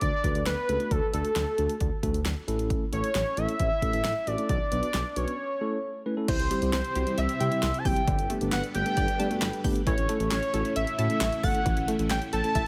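A fat, detuned analog lead carries the melody up front from the start, its sawtooth tone thickened by a sub octave and a wave-folded edge, with digital delay trailing its sustained, mellow notes. Beneath it, a smooth sawtooth bass with vibrato and a layered deep house kit of punchy kick, fat snare, hi-hat, handclaps and crash drive this wistful yet upbeat synth-pop excerpt in a straight four. A clean tine electric piano joins almost at once as accompaniment, sounding as if heard through built-in speakers, while the harmony moves through D, A and Bm before a brief break at 5.4 seconds. At 6.3 seconds the chords shift to C, Gadd9 and A, and two background layers arrive: a lush, vintage string machine holding sustained chords with a slow attack and ensemble chorus, and a round, bright analog pluck spinning arpeggios through chorus and delay. Light reverb gives the mix a touch of space, and the music is cut from a longer piece.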